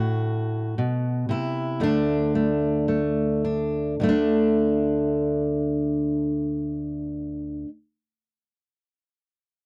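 In a straight, unhurried 4/4 at 53-60 BPM that slows over the first four seconds, this pastoral, nostalgic folk passage in D mixolydian features a lone fingerpicked steel-string acoustic guitar, tuned to A4 = 443 Hz, playing from 0.0 to 7.7 seconds. Its dark, up-front auditorium tone ranges from D2 to F#4, moving from an Amadd9 chord to D5 at 1.8 seconds. The close, dry 1970s-style studio sound carries only light reverb, and the passage is cut from a longer piece.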